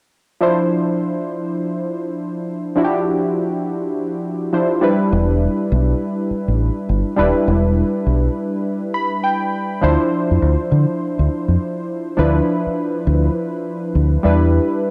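A dark, up-front fingered electric bass with a deep dub weight joins at 5.1 seconds, giving this swung R&B excerpt its punchy, confident drive. From 0.4 seconds, analog keys with a detuned sawtooth tone, fast attack, decaying notes, chorus and a filter sweep move between Dm9 and Em7, then play a short fill during a break at 8.7 seconds. Light reverb surrounds this home recording on cassette.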